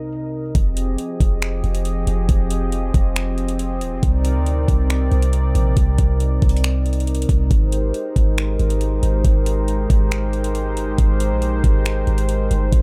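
Atmospheric cloud-rap hip hop with a half-time feel, this excerpt carries a melancholic, ethereal mood under a dark, low-pass-filtered production with little reverb. A vintage analog pad opens alone, holding sustained chords through Cm7, Fm7 and Abmaj7; its detuned sawtooth tone warbles under chorus and pumps with sidechain, sitting back in the mix. At 0.6 s an 808-style bass arrives, deep and boomy, its sine body edged with a noise layer, striking fast and then decaying, placed up front. The drum kit enters at the same moment, electronic and produced, pairing a knocking kick and metallic hi-hats with finger snaps, also forward in the mix. The pad's smooth, slow-blooming haze contrasts with the hard-hitting low end through to the cut at 12.8 s.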